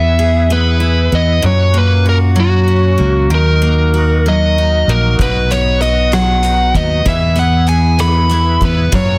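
This swaying, tender pop ballad in 6/8 opens with four parts at once. A biting, overdriven lead guitar carries the melody up front, over a bright, picked steel-string acoustic guitar and a round, punchy fingered electric bass that also sits forward in the mix. Further back, a thick, gritty tonewheel organ holds sustained chords, its percussive key click colored by chorus vibrato and a slow rotary speaker. The tempo is an unhurried 64 BPM counted in dotted quarters, with the harmony moving from E to F#, D#m and B before returning to E. At 5.2 seconds a soft-mallet drum kit joins in the background, its hi-hat, rim click and boomy kick sounding dark and smooth in a hall-like space. The recording has studio reverb and a dense, heavily limited modern master, and it is cut from a longer piece.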